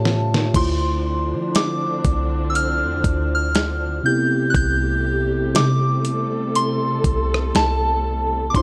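A dry, close-sounding contemporary R&B excerpt, moody and sensual, moves at a slow 60 BPM with a swung 16th feel in D dorian. A gritty, compressed sampler-style drum kit sits up front with a thumpy kick, opening on a short fill before settling in. A deep, boomy 808-style bass, muted felt-like synth keys with a dark, chorused tone, and a lush, woody string section holding sustained chords carry the harmony from A7b13 to Dm9 and Am9, while a pure, gentle FM bell melody with chorus and delay rings out high on top.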